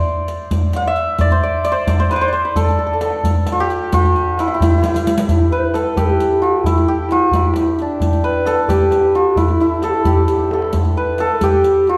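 Bathed in the wet reverb of a recital hall, this longing, hypnotic excerpt of Persian modal ensemble music in 6/8 opens on a shimmering, ringing hammered santur carrying the melody up front. A close riq with dark jingles and a tight, soft-handed tombak supply the percussion, with drum fills at 4.8 and 10.3 seconds. At 5.5 seconds a mellow, hollow, airy ney enters as a second line, its vibrato and tongued notes sitting distant in the mix with tape echo.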